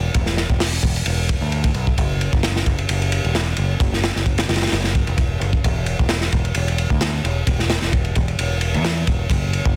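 A swaggering, funky breakbeat cut at 131 BPM with a light sixteenth-note swing, built on a crunchy, saturated drum kit of tight kick, medium-tuned snare, hi-hat and dark ride cymbal sitting up front from 0.1 seconds, over a dark, overdriven picked electric bass that stays low, round and direct throughout this short portion of a longer piece, all in a dry, dense and heavily limited modern mix.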